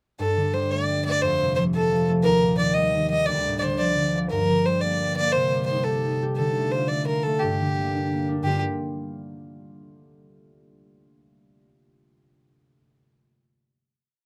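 Celtic folk in the form of a jig in G minor, this short, complete piece moves at 116 beats per minute in a straight 6/8, with a mood that is dark, lively and wild. A rich, earthy fiddle carries the melody from 0.2 to 8.6 seconds, a single bowed player with light vibrato, built from motifs shaped into period phrases. Beside it, a concert harp plays fingerpicked accompaniment over the same span, mixing bass notes with broken chord figures that ring out with a warm acoustic tone. Both instruments sit up front, caught by close, detailed microphones with a light touch of reverb. The harmony travels from Gsus2 through F, Eb and Dm before settling through Gm, Cm and Dm back to Gm, and the piece closes on a Gm7 chord from 8.4 seconds.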